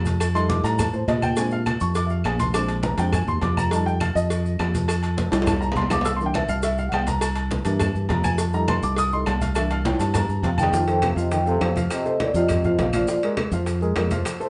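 Afro-Cuban jazz in F mixolydian at a brisk 205 BPM in straight 4/4, sunny and danceable, cut from a longer piece. A dark, worn baby grand piano sits up front and takes a solo through the opening stretch, its intimate tone carrying audible action noise and short sustain. Beneath it, a direct-sounding fingered electric bass moves between Bb1 and Bb2 over F7, Bb7 and C7 changes. The percussion bed is busy: low-tuned, thick-skinned congas and woody, band-limited claves in the background, tight high-tuned cowbell and bongos struck with hard hands, ringing metal-shell agogo bells and timbales, and grainy maracas, with two drum fills. At 10.4 seconds a vibraphone with soft mallets takes the melody, metallic and airy with medium motor vibrato, alongside a trombone with a soft attack and vibrato playing a second line in the background until 13.2 seconds. The whole is heard from further back in a room with moderate reverb, and the top end is rolled off.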